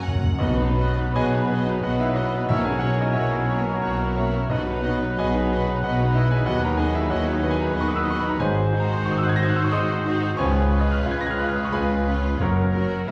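The recording sounds as if heard from further back in a reverberant scoring stage, with a faint vinyl crackle beneath the sound. This is a lush, lyrical romantic movement for piano and orchestra in B major and 3/4, moving with a rubato feel at around 78-96 BPM. An intimate, up-front baby grand piano carries the melody across a broad range, its action noise audible and its notes ringing with long sustain. Alongside it, a smooth violin section shares the melody in the background, while second lines come from an expressive, distant violin section, a mellow cor anglais, a pure straight-toned flute ensemble and a roomy clarinet. Beneath them, a mellow bassoon and a very quiet, focused viola section accompany, a tight French horn section holds sustained chords, and cello and double bass sections anchor the bass. Soft-mallet timpani with round calf heads open with a brief fill, play until 5.5 seconds and return at 12.4 seconds, while a clear, distant trumpet adds stabs from 0.4 seconds as the harmony moves from B through F#7/B, G#7 and C#7 to F#.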